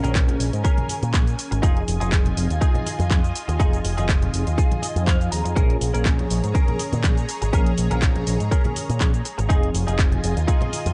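A punchy, up-front electric bass with an envelope filter and tube saturation drives this groovy, cosmic nu-disco clip in Bb minor at 122 BPM, moving between Bbm7 and Fm7 over a lightly swung 4/4. A layered electronic kick enters at 0.2 s beneath a tape-warm house kit of cabasa, handclaps and hi-hat, with hard-handed congas sitting in the background. Mellow sawtooth synth brass with chorus, phaser and cassette-tape colour sits beside a lush, thick unison pad under an analog polysynth filter sweep, while a bright, clean, direct-recorded guitar riff with ensemble chorus and delay plays a fill from 4.6 to 5.6 s, all in a dark, dry production.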